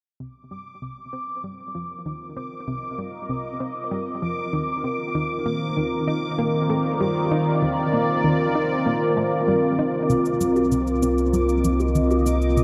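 A resonant, detuned pad sweeping through sustained chords fades in from 0.2 s alongside a round, chorused analog pluck riff with delay and a bubbling, randomly stepped high texture, giving this dark, hypnotic, expansive slice of sequencer-driven space music its glow until, at 10.1 s, a deep sine sub bass and electronic cabasa and congas join inside a huge, wet reverb.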